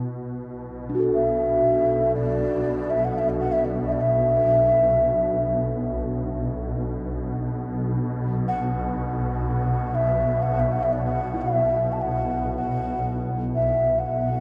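Suspended in free time, this meditative world piece is a spacious, haunting fragment from a longer work. A swarming drone of detuned sine voices in unison fills the low register from the very start: granular, tense and slowly evolving, it sits up front with a slow attack, a long release and a reverb of its own. Beside it, a bronze singing bowl struck with a felt mallet sustains a soft, metallic ring, its slow beating giving the texture a gentle shimmer. At 1.1 seconds an end-blown bamboo xiao enters with the melody, its hollow, breathy tone shaped by vibrato and a crisp attack, heard up front yet with a faraway quality. Everything is bathed in a cathedral-like reverb with a 4.7-second decay, and the dark, warm production keeps the highest frequencies subdued.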